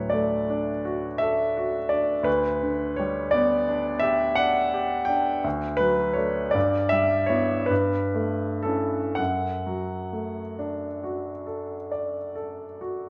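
A wet recital-hall reverb, lingering about 1.4 seconds, surrounds a clear, polished baby grand piano that sits up front with a long sustain. This tender, serene romantic nocturne in D major unfolds in a slow, rubato 9/8, at roughly 37-59 BPM counted in dotted quarters, with the solo piano spanning D2 to G5 across a 13.1-second fragment of a longer piece. Its harmony moves from D through G/D, Em/G and A7/G, reaching D/F# at 9.2 seconds.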